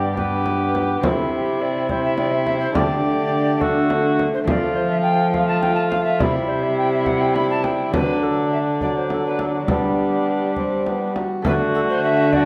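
A festive, courtly Renaissance-style consort dance in a steady 6/8 at 69 BPM opens with an airy, chiffy alto recorder carrying the melody over a dark cor anglais second line, a mellow, punchy bassoon, ringing fingerpicked concert harp in the background and a nasal, gut-string cello bass, joined at 0.2 s by the deep, soft-handed sound of a frame drum. All are set in a wet recital hall reverb as the harmony moves from G through C, D, F, C and D before returning to G and resting on D in this brief excerpt from a longer piece.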